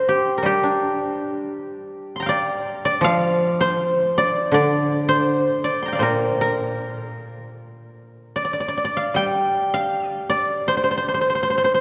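Bathed in a lush church reverb with a long, lingering tail, this short passage from a longer Chinese traditional piece features a solo guzheng placed up front, its silvery, ringing tone plucked with fingerpicks. The playing moves in a free, rubato feel across the instrument's broad span from Bb2 to C6, giving the mellow, elegant phrasing a sense of quiet longing.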